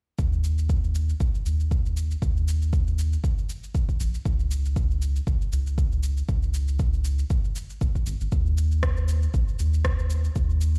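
A round, dark analog bass with a nasal edge and sidechain pumping sits up front and moves through a filter sweep, joined by a deep electronic kick and faint electronic cabasa and rim click in this swung, spiritual and hypnotic afro house excerpt from a longer piece, heard as if on a big sound system in a bare room.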